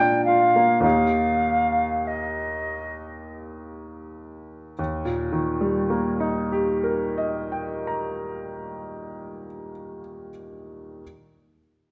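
A rubato triple metre that slows through the opening 4.8 seconds carries this serene, tender romantic classical excerpt, in which a pure silver concert flute sings an expressive, vibrato-laced melody with a crisp attack until 3.4 seconds, while a brilliant baby grand piano with long sustain continues its accompaniment alone to 11.0 seconds inside a moderate scoring-stage reverb.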